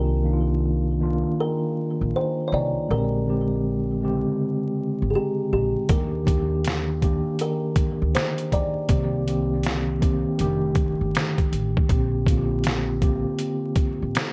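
A swung 4/4 groove underpins this reflective, melancholic lo-fi hip hop fragment, with compressed, gritty, pitched-down sampler drums (a thumpy kick, medium-tuned snare and hi-hat) arriving up front at 5.9 s. A mellow, clean, low-passed tine electric piano sits forward with chords moving from Cm11 through Ebmaj7 to Bb69, over a dark, woody pizzicato upright bass. A soft, hollow-toned kalimba carries the filtered melody with tape echo until 8.7 s, all in a dry, close sound laced with vinyl crackle.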